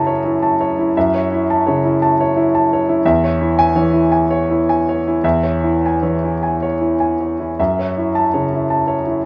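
Lightly reverberant and close, this brief, reflective excerpt of neoclassical minimalist piano features a solo grand piano with a boxy, up-front tone and audible action noise, drifting in a rubato 6/8 from F#m7 to C#m/E and back to F#m7 at 7.6 seconds across a range from E2 to A5.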